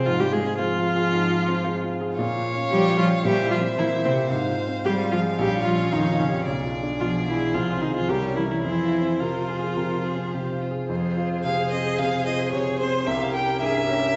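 A quick classical-period movement for piano quintet in F minor at 112 BPM, this restless, stormy excerpt opens with cello, baby grand piano and viola together before two violins join at 0.6 s. One violin carries the melody with a clear, smooth vibrato, while a second, richer violin and a focused, distant cello add supporting lines. The up-front viola and an intimate piano, its action noise audible and its sustain long, supply accompaniment over chords such as Fm/Ab, Bdim7 and C7b9, all heard from further back in a reverberant recital hall with the top end dulled above 7.8 kHz, and the music moves into a new section at 10.9 s.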